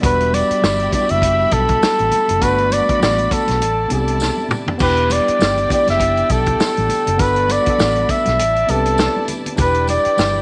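Swung sixteenths in 4/4 carry this smooth, cinematic stretch of lush 1970s-style soul, where an up-front, warm flugelhorn sings the melody with light vibrato and scooped notes while a dark, woody violin section, bowed sul tasto, sits distant in the background. A worn, slightly out-of-tune electric piano, lightly overdriven through its built-in speakers, plays the chords over a round, foam-muted fingered bass and a dry acoustic kit with punchy kick and rolled-off top, which plays a fill from 4.2 to 4.8 seconds. A jingly tambourine and very quiet, soft-handed congas entering at 0.3 seconds add color within a moderate echo-chamber ambience.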